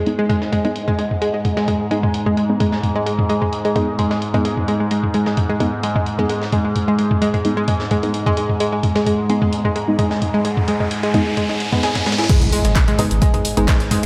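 Hypnotic and industrial, this cut from a longer driving peak-time techno track at 130 BPM in G# minor rides a resonant, overtone-sweeping sawtooth drone and muted, detuned dub chord stabs under a nasal, phaser-tinged analog pluck riff up front, with a gritty, compressed breakbeat sampler kit and a punchy, tape-warm analog drum machine supplying hats, claps, toms and crashes, before an electronic riser from 9.6 s leads into a drop and impact at 12.3 s, where a punchy electronic kick and a thick, saturated sine sub bass arrive, all bathed in a lush, dreamy hall reverb.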